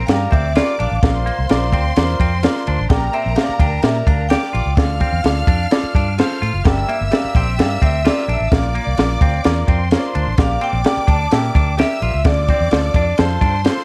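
A ringing, metallic vibraphone carries the melody in this urgent, passionate snippet of uptempo 1960s-style soul, its medium hard mallets and slow motor vibrato sounding in a boxy small room. A compact cocktail drum kit sits up front with a punchy kick, a high-tuned snare and ride cymbal, its dark, smooth tone rolled off at the top, while a vintage foam-muted fingered electric bass adds a round, amped low end. A clean, compressed semi-hollow electric guitar picks a bright hollow-body riff, and a brilliant grand piano fills in the accompaniment. A lush, close symphonic violin section bowed with vibrato plays a focused second line. Moving at 128 BPM in a straight 4/4 in G dorian through Gm, Bb, Gm/Bb and Dm before closing on F, the track is bathed in light reverb and a layer of vinyl crackle.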